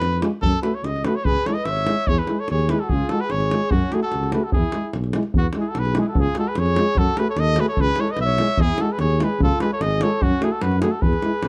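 A dark, warm production with light reverb frames this festive, exuberant Balkan brass band fragment in E major, moving at 147 BPM in a straight 2/4 across two passes of the same section. A bright trumpet with light vibrato carries the classical-style melody up front in plate reverb, over a punchy tuba bass with a smooth top and a tight, compressed, saturated davul, while a clear euphonium and a mellow, present French horn in the background hold the accompaniment. From 1.3 seconds a mellow flugelhorn adds a second line as the chords cycle through F#m, C#m, E and C#.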